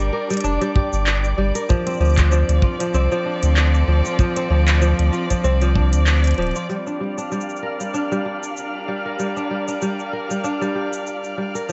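Autumnal and intimate, this folktronica fragment sets a ringing, fingerpicked kora up front over distant, expressive bowed string-quartet chords with vibrato and portamento, a round sine sub bass that drops out at 6.5 seconds, a flickering granular texture in the background, an overdriven electronic kit of crisp hats, handclaps and shaker, and a tight acoustic kick heard from 0.8 to 5.9 seconds, under a veil of vinyl crackle and a muted top end.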